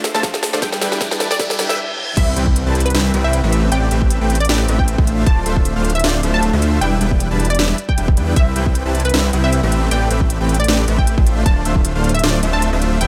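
This lush, bittersweet future bass excerpt at 155 BPM in a half-time feel opens on a build-up of airy, breathy pad chords, a round, tine-like thumb-piano-like synth pluck arpeggio, a trap drum fill and a very quiet riser and reverse cymbal, joined by a huge, sidechain-pumped supersaw riff, a punchy unison pluck melody with digital delay and a hard-clipped electronic kick, before a brief stop gives way at 2.2 seconds to an impact and a drop where a thick, detuned saw bass with chorus drives up front under crisp hats and a sharp snare in a light reverb.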